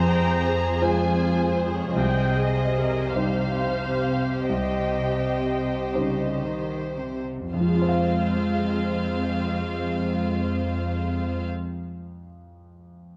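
A veiled, muted cello section sits up front with a soft attack, carrying the bass line beneath muted violins that sing a bittersweet melody and a second line, and a distant con sordino viola section adds inner accompaniment. This cinematic, emotional film-score excerpt moves in a rubato 6/8, full of longing, slowing down from early on until the second section begins at 7.5 seconds. A clear concert grand piano with a deep bass accompanies throughout in a moderate recital-hall reverb, playing on alone after the strings stop at 11.5 seconds until 13.2 seconds.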